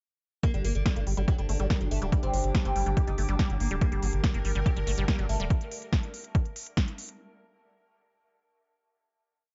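Alien and psychedelic, this short psychedelic trance piece in G harmonic minor drives at 142 BPM, with a punchy, up-front four-on-the-floor kick running to 6.9 seconds and a programmed techno kit of smooth hats and backbeat snare running to 7.2 seconds, while a round, deep analog bass rolls in sixteenths beneath a squelchy, resonant acid line that slides through a filter sweep. A bright, woody, plectrum-plucked oud repeats a riff over a pedal note with phaser, dub echo and sidechain pumping, and a warbling, lo-fi tape-like pad with slowly shifting chords sits in the background from 1.2 seconds. An evolving wavetable pad adds a held high note from 4.2 seconds, all within a dark production with light reverb.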